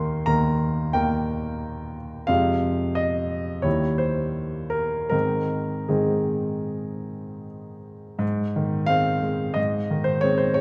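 Romantic classical character piece for solo grand piano in Ab major, warm and hopeful, moving at a flexible rubato pulse of roughly 75-91 BPM in 4/4. The smooth, vintage-toned piano sits up front, spanning Eb2 to C6 as it passes through Eb, Fm, Eb and settles on Ab by 5.1 seconds. A wet recital-hall reverb surrounds it across this brief 10.6-second passage drawn from a longer work.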